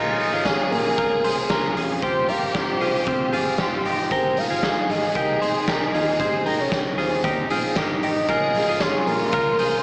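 A wet concert-hall reverb gives this bittersweet, restless fragment of jangly indie pop a big arena sound, though it also carries the character of a small speaker. A soft, octave-layered synth lead carries the melody with a round, full-bodied tone, its sub-octave layer, vibrato, chorus and phaser lending it a dark, sustained glow. Alongside it, a bright, compressed twelve-string electric guitar rings out clean arpeggios with a slapback echo. A lush studio violin section bows a smooth second line in the background, while a picked steel-string acoustic guitar fills in the accompaniment with an auditorium tone. Both also carry a slapback echo. Up front, a raw garage drum kit enters at 0.2 s with a punchy kick, a medium-tuned snare and hi-hat, sounding saturated and gritty with a rolled-off top. A vintage foam-muted fingered bass sits far back, amped and dark, as the harmony moves from Bbm7 through Fsus2 and Abmaj7 before returning to Bbm7 at 8.3 s.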